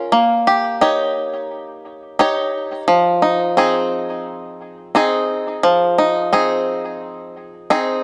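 Folktronica with a pastoral, delicate mood, where a twangy, percussive bluegrass banjo played with fingerpicks sits up front alone from 0.0 to 8.0 seconds, its acoustic tone touched by tape echo and set in a moderate plate reverb as the harmony moves from Eb7 to Ab6 at 2.9 seconds in this short cut from a longer piece.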